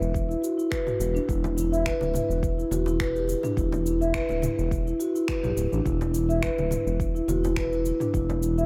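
Hypnotic and meditative, this organic downtempo excerpt in E minor moves at 105 BPM with a gentle 16th-note swing, set in a dreamy mix soaked in plate reverb. An up-front, smooth synth bass with vibrato and sidechain pumping sits low beneath a round, soft-mallet marimba playing arpeggios from 0.3 seconds, its tone given vintage 12-bit sampler grit and a diffuse ambient delay. A layered electronic kick and a produced deep house kit of cabasa, finger snaps and toms carry the groove, while ringing, close and dry bongos and congas played with hard hands sit in the background.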